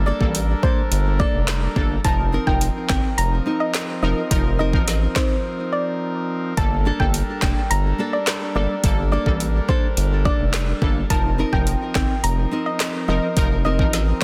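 An overdriven, electronic afro-pop drum kit sits up front in this hypnotic, bouncy dancehall excerpt, with a deep kick, woody snare, metallic hi-hat and handclaps, all re-recorded in a small room, while a round analog bass adds a nasal, mellow low end. A dark, gentle pluck carries the melody through chorus and digital delay, fingerpicked nylon-string guitar arpeggios pass through their own delay, and both a bright, detuned synth brass stab and a thick, romantic pipe organ on foundation stops pump with sidechain. The harmony moves between Gmadd9 and F7sus4, with a break from 5.4 to 6.6 seconds, and the mix is dry, dense and heavily limited.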